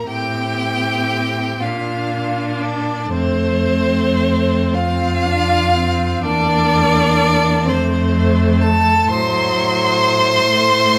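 A single first violin carries the melody from C5 to C6 with a clear, focused tone and vibrato, placed up front yet with a slightly distant quality. This is a slow, romantic movement for string quartet in 6/8 with flexible rubato, and the mood is yearning and solemn. Beneath it, the second violin holds a smooth, even line, while the viola adds an expressive accompaniment shaded with vibrato and portamento. The cello anchors the bass in a low, focused register close to the listener. All four bowed players sound together through the whole passage, which runs 11.0 seconds and is cut from a longer piece, with the harmony moving from Am7 through Bb and F before settling on Am6. A generous recital-hall reverb surrounds the ensemble, giving the sound the spacious bloom of a church or concert hall.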